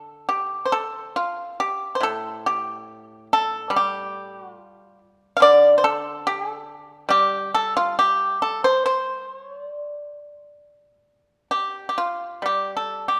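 A moderate scoring-stage reverberation surrounds a solo pipa that sits close and up front, its plucked tone dry and percussive. This is a short piece of Chinese traditional music, cut from a longer work, with a longing, elegant mood. The pipa plays alone throughout its 13.2 seconds, played with fingerpicks and spanning from A2 to F5. The rubato feel lets the phrases breathe freely over a loose four-beat pulse, and the acoustic instrument keeps a warm character against the spacious room.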